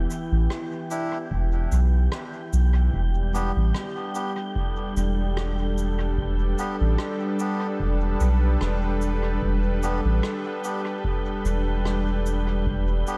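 This spacious, deep ambient dub piece at 74 BPM opens on a smooth, detuned sawtooth pad with chorus holding an E minor chord up front over a round, soft sub bass, while an airy, wind-like noise layer drifts in the background with lush chorus and its own reverb, and distant cabasa and rim click with dub echo carry a gently swung sixteenth-note feel. Reedy, nasal melodica stabs with dub echo enter at 0.9 seconds, and a dry, deep electronic kick joins at 1.3 seconds, within light reverb and small-room ambience.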